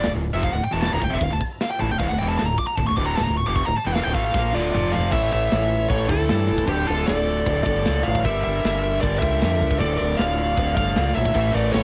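A straight 4/4 pulse at 154 BPM drives this dark, aggressive heavy metal excerpt in D harmonic minor: a tight metal drum kit with bright cymbals, a medium-tuned snare and a tight kick plays a fill at 4.3 seconds under an up-front, shadowy high-gain lead guitar solo that carries the melody through tape echo, while a second lead guitar line joins in the background at 4.5 seconds, a picked, tight distorted guitar riffs throughout, a scooped high-gain guitar riffs mostly in the opening until 5.1 seconds, and a growling, round, overdriven fingered bass sits up front, all wrapped in the lo-fi character of a home cassette recording made in a small booth.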